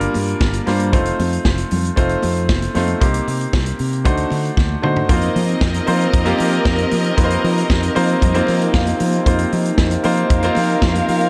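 A clear, intimate grand piano with audible action noise accompanies this danceable, driving disco cut at 115 BPM, playing over Gm7, F7, Cm7 and D7b9 alongside a warm fingered electric bass, an up-front vintage drum kit with a punchy kick and medium-tuned snare, and very quiet, high-tuned congas that ring softly. After a drum fill, a woody, bowed chamber string section with vibrato enters at 5.1 seconds on a second line, while a dark, distant French horn section holds sustained chords behind it. The piano adds a fill at 7.7 seconds, and the whole cut, taken from a longer piece, carries little reverb.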